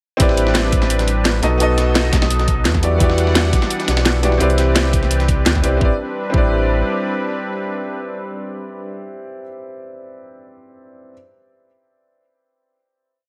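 Rolling two-step drums drive this dreamy, lush liquid drum and bass piece at 171 BPM in A dorian, with a knocking electronic kick, cracking snare and bright hats layered over a gritty, tape-warm looped breakbeat with edits that sits in the background of a large room. A deep, full sub bass with octave carries long gliding notes up front, while a clear baby grand piano plays held rootless chords with syncopated pushes through a dub echo, over a smooth, detuned sawtooth pad with chorus, tremolo and sidechain pumping. The hats and snares drop out at 5.7 seconds, the kick at 6.4 seconds and the bass at 6.8 seconds. The piano and pad hold the final Am11 chord, with the pad fading at 8.9 seconds and the piano ringing on until 11.1 seconds.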